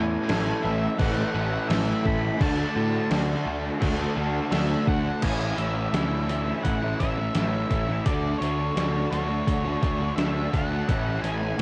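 Dreamy and wistful, this short cut from a longer shoegaze and dream pop track moves at 85 BPM in A major, drifting from Amaj7 through D and Dmaj7 with little reverb and the feel of a home cassette recording. A round, fuzzed bass sits up front beside a thumpy, detuned 8-bit drum machine that enters at 0.3 seconds, while a dark octave-fuzz lead guitar carries the melody through cassette tape and tape echo. In the background, a bright, double-tracked crunchy guitar riffs until 5.2 seconds alongside an overdriven electric guitar with ensemble chorus and a hollow-body semi-hollow guitar washed in reverse reverb.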